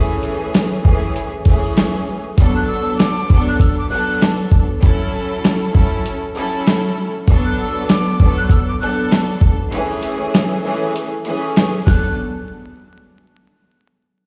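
A rich, bowed string section with smooth vibrato opens this moody, reflective boom-bap hip-hop excerpt at 98 BPM in B dorian, joined at 0.2 s by a gritty, compressed sampler-style drum kit up front, whose thumpy kick, medium-tuned snare, hi-hat and shaker swing on the 16ths, before a breathy metal jazz flute with soft attack, lifted highs and slapback echo carries the high melody from 2.6 s over Amaj7, Bm7 and F#m7 chords into a break at 9.7 s, the whole mix steeped in vinyl crackle and the large reverb of a big sound system in a bare room.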